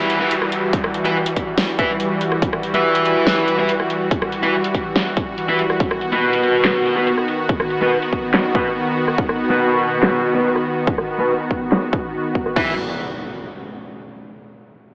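Chaotic and aggressive, this half-time heavy wobble dubstep excerpt at 142 BPM in E harmonic minor sets a lush, detuned supersaw pad pumping with sidechain beneath bright, fuzzed and double-tracked guitar stabs that run through distortion, digital delay and a filter sweep, moving from Emadd9 to B at 5.8 seconds. A punchy, up-front electronic kick joins at 0.7 seconds alongside a tape-warm kit of huge snare, metallic hats, handclaps, rim click and crash cymbal, the kit itself swept by a filter. A downlifter and impact sound at the opening and again from 12.6 seconds, all of it bathed in a lush hall reverb and an AM radio sound.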